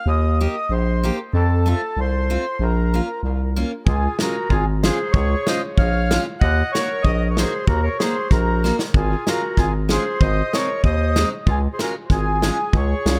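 Bathed in light reverb and plenty of echo, this bouncy, jolly alpine folk dance-band passage, cut from a longer piece, opens with a reedy, close-miked accordion carrying the melody through analog delay over a thick, growling FM bass that sits up front. A picked steel-string acoustic guitar with fresh strings and a full-bodied tone, also touched by analog delay, fills in the accompaniment. At 3.9 s a bright, present clarinet enters with a classical-style second line as a natural country drum kit arrives with a punchy kick and medium-tuned snare, adding a short fill at 8.6 s before the cheerful dance carries on.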